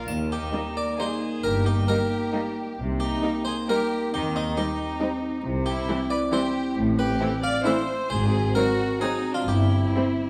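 Magical and mischievous, this playful, whimsical film cue moves at 134 BPM in a straight 3/4, opening in E-flat major before shifting to C major at 5.5 s. A brilliant, up-front harpsichord with octave strings carries the melody alongside a clear, focused violin section, while a smooth second violin line and viola accompaniment sit in the background over a rich bowed bass of cellos and double basses. Dark, distant French horns hold loose sustained chords, a dry triangle sounds briefly at the start, and a wet scoring-stage reverb adds depth to this short excerpt from a longer piece.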